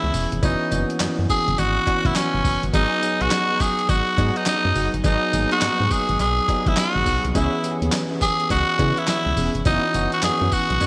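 Bouncy and punchy, this short cut of new jack swing R&B rides a swung sixteenth-note groove with a bright 1980s-style digital sheen. A raspy tenor saxophone carries the melody up front with vibrato and a touch of delay, sounding edgy and present in a pop solo style. Beneath it, a bell-like tine electric piano supplies clean, direct accompaniment, while a round, dark FM bass gives the low end a fast, decaying attack. A dusty, gritty, compressed sampler-style drum kit with a thumpy kick, medium-tuned snare, hi-hat, handclaps and tambourine enters at 0.1 seconds under gated reverb, joined at 0.4 seconds by a very quiet metallic cowbell. From 2.7 seconds, mellow synth brass adds detuned sawtooth stabs with chorus and a filter sweep, sitting in the background as the harmony moves from G#m7 to C#m7 and back to F#7sus4, all within a lush hall reverb.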